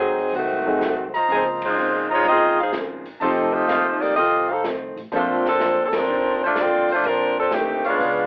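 A clear saxophone section carries the melody up front in this brassy, swinging big band excerpt, its jazz-style vibrato ringing out over a 125 BPM swing groove in Bb major. A warm trumpet section with light vibrato and a smooth top punches in with stabs from 1.1 to 3.9 seconds and again at 7.8 seconds, while the full band hits accents at 1.5 and 5.8 seconds. In the background, a dark, clean, compressed hollow-body archtop guitar and a natural concert grand piano with deep bass supply accompaniment, the piano entering at 0.7 seconds, over the chords Ab7b9, Dbmaj13, F7 and Bbmaj9. A woody, thumpy pizzicato upright bass on gut strings sits low beneath an acoustic drum kit with dark cymbals, a medium-tuned snare and a boomy kick, heard on hi-hat, ride, snare and kick. The whole take has the narrow, telephone-like sound of a home cassette recording, with tape coloring the horns, guitar and piano and a wet studio reverb around the band.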